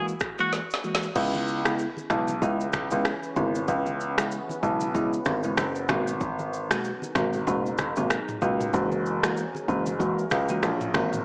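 A warm baby grand piano carries the bass line up front, entering with the congas at 1.2 seconds, in this mellow, sultry afrobeats excerpt cut from a longer piece, set at 95 BPM in 4/4 with a swung sixteenth-note feel in C# dorian. Before that, a bright, twangy clean electric guitar plays a brief picked melody note with tape echo that ends by 0.5 seconds, while a bell-like tine electric piano with subtle chorus begins its accompaniment and keeps it going to the end. The produced afro-pop drum kit sits up front with a deep kick, woody snare, rim clicks, finger snaps, shaker, toms and crash cymbal, and plays a drum fill just before the piano bass arrives. The close, dry congas, damped, low-tuned and struck with hard hands, stay very quiet, and from 2.0 seconds a deep, moody ambient pad adds sustained, slowly evolving chords far in the background. The harmony moves from F#9 to C#m7, G#m9 and back to F#9, and the whole recording carries a worn, warbling cassette character with pitch drift, a small-speaker sound and moderate plate reverb.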